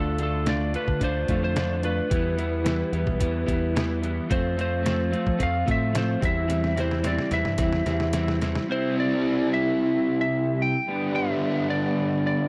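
Steady straight 4/4 at 110 BPM drives this cool, restless indie rock excerpt, where a bright, twangy, lightly driven lead guitar sings its melody over two picked, overdriven electric guitar riffs, one up front and the other darker with an ensemble chorus, while a growling, punchy fingered bass and a detuned 8-bit drum machine with a thumpy kick and fat snare carry the Dm–Em–F–C/E progression, the drum machine closing with a fill from 6.5 to 8.7 seconds before bass and drums drop out and the guitars move on to C and G6 in a dry, close 1970s-style studio sound touched with light reverb.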